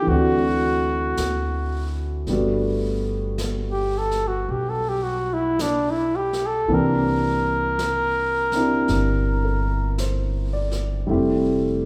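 A breathy, mellow trumpet carries the melody up front in this romantic, late-night jazz ballad at 54 BPM, bending into scooped notes with a smooth top as it moves into a solo at 2.3 seconds before falling silent at 10.0 seconds. Underneath, a woody upright piano with long sustain and a thumpy pizzicato upright bass move through D7, Gmaj9 and C7 toward Fmaj9, while a softly mixed brush kit adds brushed snare and hi-hat with a swung feel. The whole excerpt sits in a large studio reverb, heard from further back in the room.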